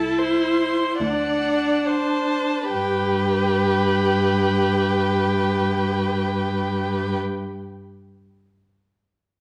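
A slow, tender classical movement for string quartet in G major opens with all four bowed instruments together: a focused, distant first violin carries the melody high above a soft-attacked second violin line with portamento, while a close, expressive viola and a smooth, even cello sit up front with rich vibrato. At 37 BPM in a rubato 3/4, the phrase slows over its first 2.7 seconds, moving from Am/C through D7 to a G resolution. A wet recital hall reverb surrounds this brief excerpt, cut from a longer piece.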